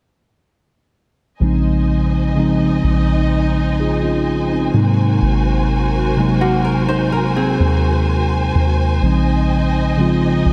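Close and lightly reverberant in a small room, this slow R&B excerpt in Bb minor at 63 BPM moves with a sensual, longing mood over Bbm11 and Ab9 chords. From 1.4 seconds a mellow, up-front tine electric piano carries the accompaniment, a round, dark 808-style bass sits deep beneath it, and a bowed string section holds sustained chords with expressive vibrato and portamento. Between 6.4 and 8.8 seconds a fingerpicked nylon-string guitar adds classical-toned arpeggios touched with delay.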